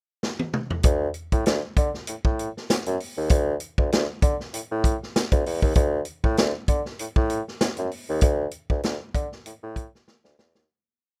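Playful and strutting, this short funk piece at 98 BPM swings lightly on its sixteenths as a punchy, rolled-off vintage drum kit opens with a fill at 0.2 seconds and settles into a syncopated groove with ghost notes, joined at 0.8 seconds by an up-front bassoon with light vibrato playing a classical-toned syncopated bass riff anchored on the downbeat with muted ghost notes and chromatic approach notes, all in a dry, rough home-demo mix that fades out from 8.2 seconds under a closing drum fill.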